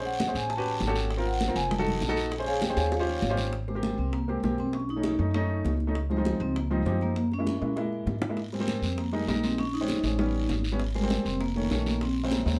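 Afro-Cuban jazz with a sophisticated, danceable mood, cut from a longer piece, where a mellow, ringing vibraphone played with soft mallets and a medium motor vibrato carries the melody and opens with a solo over rich extended chords. An intimate baby grand piano with audible action noise and short sustain sits up front beside a woody, thumpy pizzicato upright bass. Bright, high-tuned congas and tight bongos stay in the background, a raspy, close guiro drops out at 3.5 seconds and returns at 8.4 seconds, and drum fills and light reverb round out the sound.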